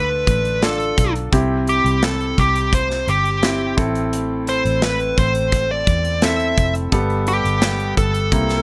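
A straight 4/4 pulse carries this driving, bittersweet piano-driven pop excerpt, moving through Dm, C, Am and Gadd9, with an up-front modern drum kit of hi-hat, kick and snare entering at 0.3 s, its airy small-room sound built on a tight kick and a medium-tuned snare. A clear, intimate grand piano with long sustain and audible action noise supplies the accompaniment, while a vintage fingered electric bass, foam-muted and round, holds the low end. Over the top, a dark, smooth lead guitar with overdrive and a picked attack sings the melody, sitting up front, and a light reverb surrounds the whole mix.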